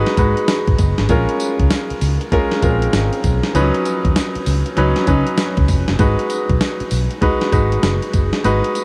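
Punchy and bouncy, this short new jack swing cut in G# dorian moves at 98 BPM with a swung sixteenth-note feel, cycling through G#m7, A#m7 and C#9sus4 before returning to G#m7. A brilliant, polished grand piano sits up front with short sustain, while a dark, foam-muted fingered electric bass supplies a round, amped low end. A sampler-style 12-bit drum machine with a thumpy kick, medium-tuned snare, hi-hat and tambourine enters at 0.1 seconds, and the whole mix is soaked in a huge, dreamy reverb with an 8.0-second tail.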